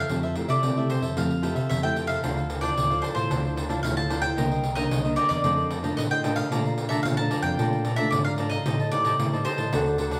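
Recorded live by a band in one room, the sound carries a wet stone-room reverb that gives it a lively, echoing air. This festive, playful blend of samba and choro moves at 112 BPM in 4/4 with a straight feel, in D minor, and it is cut from a longer piece. A bright, woody mandolin carries the melody with picked double strings, while a crisp cavaquinho and a small, fingerpicked nylon-string guitar fill in the harmony. A tine electric piano heard through its built-in speakers plays a clean, warm bass line, and a jingly pandeiro struck with hard hands sits up front. The opening rests on Fmaj9 before the music shifts at 2.2 s into a new section that moves through Dm9, Cm9, F6, Bbmaj7 and Am7b5.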